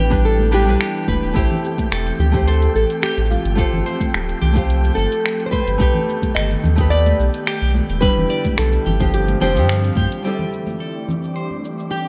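Fingerpicked nylon-string guitars open this relaxed, smooth sunset chillout excerpt in A minor at 108 BPM, one carrying a full-bodied melody through chorus and delay and the other a darker accompaniment, over an airy, breathy pad, shadowy picked arpeggios from a clean electric guitar, a faint wind-like noise texture, a round, up-front sub bass and a deep electronic kick that both drop out at 10.1 s, deep house drums with murky hi-hats, finger snaps and shaker, and congas set back in a live room, the mix sitting in light reverb with a bright 1980s-style digital sheen.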